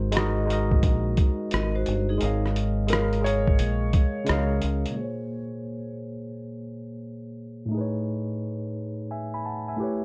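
A swung 87 BPM lo-fi hip hop groove in 4/4 opens this dreamy, cosy fragment cut from a longer piece. A muffled, pitched-down trip hop sampler kit brings a thumpy kick, hi-hat and rim click, sitting up front beside a round, punchy fingered dub bass. A worn, slightly out-of-tune tine electric piano with a barky bite and a low-pass filter carries the chords from Ab9 through Db69 voicings, heard through its built-in speakers. A hard-mallet vibraphone adds a brief metallic, ringing second line at 1.5 s in a boxy small room, and a felt-muted upright piano enters at 2.9 s with a soft, intimate melody, its action noise audible; both sit behind a low-pass filter with tape echo. The bass drops out at 4.8 s and the drums at 5.0 s, leaving the electric piano alone under a filter sweep as the harmony moves to Bbm9 and Amaj9#11, all in a dark, dry production with a dulled top end.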